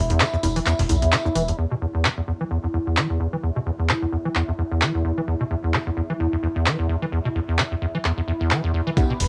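A rubbery, resonant square-wave acid bass riff sits up front through this raw, trippy acid house excerpt at 130 BPM in 4/4, with a 56% swing on the 16ths and an E5 chord at the start. It rides over a dry, overdriven analog drum machine of congas, handclaps, hi-hat and shaker, while a lush, detuned sawtooth unison pad holds bright, airy chords with chorus, phaser and sidechain pumping. A round, dark analog bass and a very quiet, natural acoustic funk kit of high-tuned snare, hi-hat and tambourine fill the opening break until 1.6 seconds, when a filter sweep begins on the pad. At 9.0 seconds a soft, mellow chord stab and a thumpy sampler-style kick punch in, all wrapped in moderate room ambience and the character of a home cassette recording.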